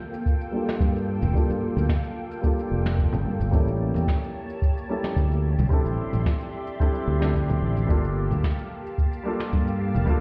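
A clear concert grand piano and a silky string machine open together at 0.0 seconds, the piano playing accompaniment through a low-pass filter with a sweep running across its whole length plus delay, while the vintage strings hold slow-attack chords shaded by phaser and ensemble chorus. This is a wistful, relaxed sunset chillout cut from a longer piece, moving at 110 BPM in a straight 4/4 in G dorian. A brushed snare and airy shaker come in almost at once, followed by a deep analog kick sitting up front and a fingered electric bass, direct and amped, entering at 0.8 seconds. Very quiet congas, played with soft hands and given a bright, saturated edge, join at 1.2 seconds. The harmony moves from Gm9 to A7b9 and D9sus4 before returning to Gm9, and the whole mix sounds muffled as if heard through a wall, set in a stone room reverb with light small-room ambience.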